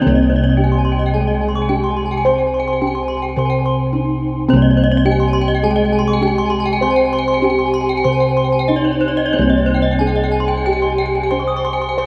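In a straight 4/4 pulse at 91-107 BPM in C pelog, this brilliant, shimmering Balinese gamelan excerpt sets a mellow bronze metallophone melody struck with padded mallets over up-front, round, beating bossed gongs carrying the bass, while two bright horn-mallet metallophones ring out high arpeggios with the shimmering beats of paired tuning, and a soft, airy metallophone accompaniment sits in the background until 9.3 seconds, all bathed in the huge reverb of a vast, echoing space.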